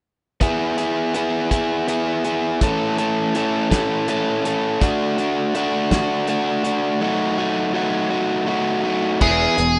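A slow 6/8 lilt at 55 BPM, counted in dotted quarters with a straight feel, carries this carefree, upbeat indie rock clip cut from a longer piece in E major. From 0.4 s an up-front, bright overdriven electric guitar plays a picked riff between E3 and A4 over a chord cycle of E, A, D and F#m6 before landing back on E at 9.2 s. Underneath, a cloth-damped acoustic drum kit thuds along with a tight kick, medium-tuned snare, hi-hat and dark crash cymbal, its top end rolled off in a small-room sound. At 9.2 s a nasal lead guitar with a parked wah and overdrive enters up front on a single G#4, joined by a growling, round picked bass with overdrive sitting low on E1. The whole thing has the rough character of a home demo mix, with the high end capped at 10.6 kHz.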